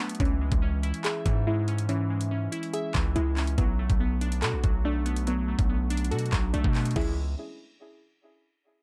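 A half-time drill groove at 142 BPM drives this menacing hip hop passage in C# phrygian, with an electronic kit putting a knocking kick, metallic hi-hats, handclaps, rim clicks and a crash up front beside a heavy, saturated 808-style bass, as the harmony moves from C#m to Bm7. Beneath them in the mix, glassy, warbling digital keys with chorus carry the accompaniment while a soft, round pluck spins dark arpeggios through chorus and delay. The dry, shadowy production keeps the ominous mood close and heavy.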